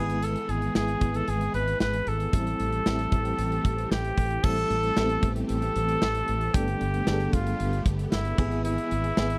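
A clear flugelhorn leads this short cut from a longer 1980s-style pop piece, carrying the melody with vibrato and a slapback echo. It sounds from the very start together with a mellow FM electric piano with tremolo, a string machine voicing violas, and a round fretless electric bass. The big rock drum kit enters at 0.1 seconds, up front with a punchy kick, a medium-tuned snare, bright cymbals, hi-hat and tambourine. Set in A minor at 114 BPM in a straight 4/4, the mood is urgent and dramatic, moving from E/G# through Am7 and Gadd9 before returning to E/G#. The electric piano has a fast attack with a noise layer, the sawtooth string machine sits in the background with a soft attack, long release and ensemble chorus, and the dark bass carries a subtle chorus. The sound is dry and close, like a 1970s-style studio recording.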